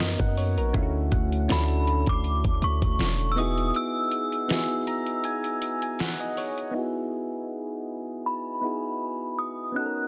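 Tender and smooth, this contemporary R&B excerpt moves at 80 BPM in E lydian, built on mellow, chorused electric-piano-like synth keys that carry Bmaj9, Dmaj9 and Emaj9 chords alongside a boomy 808-style bass, a produced drum kit with a knocking kick, deep snare and metallic hats, and a dark, softly rounded pluck sitting in the background with tape echo. At 1.5 seconds an inharmonic FM chime takes the melody, ringing high with ensemble chorus, tremolo and tape echo. The bass and pluck drop out at 3.7 seconds for a break where the keys add a fill, and once the drums stop at 6.7 seconds a filter sweep carries the closing section in a dry, dense, heavily limited modern mix.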